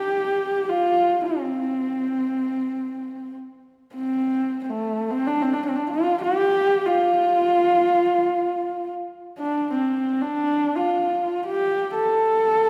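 A lone horsehead fiddle opens this short excerpt from a longer piece of Mongolian traditional music, bowed by a single player with a dark, nasal and husky tone. Played in free time and set in an F gong mode with tuning at A4 = 441 Hz, the music carries a proud, galloping spirit across its 12.7 seconds. The fiddle stays between A3 and A4, its horsehair strings giving a woody, slightly boxy character, colored by vibrato and portamento. It sits up front in the mix, yet a generous stage reverb with a 2.0-second decay surrounds it, suggesting the open resonance of a church or concert hall.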